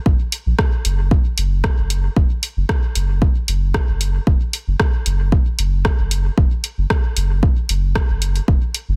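Dub techno with a deep, cavernous mood, this short passage cut from a longer piece rides a straight 4/4 pulse. A round, sine-like sub bass sits up front from the start, its fast attack giving way to sustained notes between E1 and Bb1, thickened by tube saturation and pumping through sidechain compression. The layered electronic kick drum is deep and tape-warm, carrying the character of having been re-recorded in a small room. A deep house drum kit enters at 0.3 seconds with hi-hat and rim click, its snare softly clipped and trailed by dub echo. The mix is dry, with a dense, heavily limited modern master.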